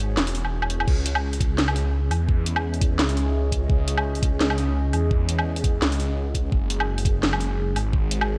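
Dark and cinematic, this half-time drum and bass excerpt opens on a moody, deep sawtooth pad with chorus, reverb and sidechain pumping, holding chords from F#sus2 to C#m under a thick, swirling, saturated phased saw bass, while an up-front layered kit of cracking snare, metallic hats, crash and woodblock, re-recorded in a small room, enters at 0.2 seconds, followed by a knocking electronic kick at 0.9 seconds.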